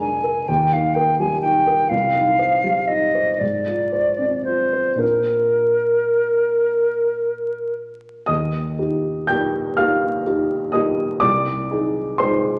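Serene and warm, this rubato romantic classical duo in 6/8, cut from a longer piece, pairs an airy, hollow concert flute singing the close-miked melody with crisp attacks and vibrato until 7.8 seconds, over a dark, mellow baby grand piano whose intimate accompaniment, short in sustain and flecked with audible action noise, carries on alone to 12.6 seconds, all set in a wet recital-hall reverb beneath a layer of vinyl crackle.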